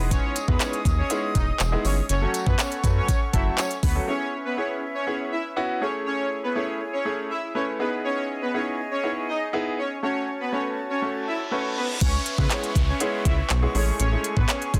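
A straight dance-pop pulse opens on a confident, bittersweet drop. A knocking, layered pop drum kit with crisp hats, handclaps and crash, a deep, round analog bass and a distant, jingly tambourine drive the groove beneath a clear, polished baby grand piano and an airy flute group holding sustained chords in the background, with the bass, piano and flutes all pumping under sidechain. A soft, detuned supersaw lead with tape echo, also pumping, carries the melody throughout. After the drums, bass and tambourine fall away, a reverse cymbal and downlifter enter at 11.2 seconds, and the kit and bass return for the second drop at 12.0 seconds, under light reverb and a dense, heavily limited master.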